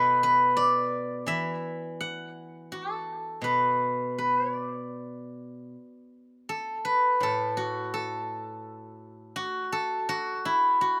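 A silvery steel-string zither, played with fingerpicks, carries this brief passage of Chinese traditional plucked-string music entirely on its own from 0.0 to 11.0 seconds. Its ringing acoustic tone sits up front, with a slapback echo adding a doubled edge to each note. The playing moves freely in a rubato feel over a loose 4/4 metre, spanning a range from A2 to F#5. The mood is elegant and serene, and the music shifts into a new section at 5.7 seconds before the cut from the longer piece ends. The outdoor recording carries only light reverb around the zither.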